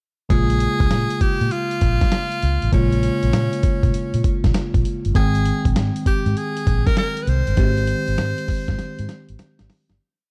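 An edgy tenor saxophone leads this short, complete new jack swing piece with a forceful, jazz-style solo built from motif-based call phrases, scooped notes and delay, and it stops at 9.4 seconds. The groove sits at 99 BPM in 4/4 with hard-swung sixteenths, moving from Bbm7 to Abmaj7 in Bb dorian, and the mood is bouncy and punchy. Up front, a dusty, gritty sampler-style drum kit plays a compressed drum-machine beat on thumpy kick, medium-tuned snare and hi-hat, with a fill from 8.8 seconds. A vintage foam-muted fingered electric bass, round and amped, carries a swung synth-funk line full of muted ghost notes and chromatic approach notes. A bell-like tine electric piano holds clean, bright drop2-voiced chords, while digital ambience frames a dark, warm production that fades out from 7.6 seconds.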